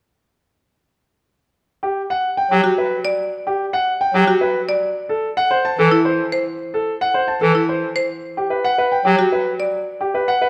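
Hypnotic and meditative, this minimalist classical pattern music moves at 110 BPM in a straight 3/4. A brilliant concert grand piano carries the melody from 1.8 s, with long sustain and deep bass. A hollow pipe organ clarinet stop with baroque voicing and a touch of chiff joins at 2.5 s as accompaniment, and a woody, percussive marimba struck with hard mallets on rosewood bars adds arpeggios, all three set up front in a wet recital hall reverb while the harmony drifts from G major seventh colours to a rootless F# half-diminished chord and back to Gmaj7 before the cut at 10.5 s.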